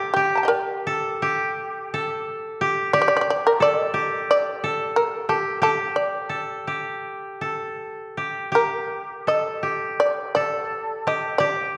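Calm and austere, this short passage of Japanese traditional music moves with a free, rubato feel in 4/4. A bright, buzzing shamisen carries the melody with a plucked, percussive edge, while a woody, dry koto plays a close second line beneath it, both up front in the mix from 0.0 to 11.8 seconds. A long, wet hall reverberation surrounds the pair, lending the sparse duet a spacious, resonant setting.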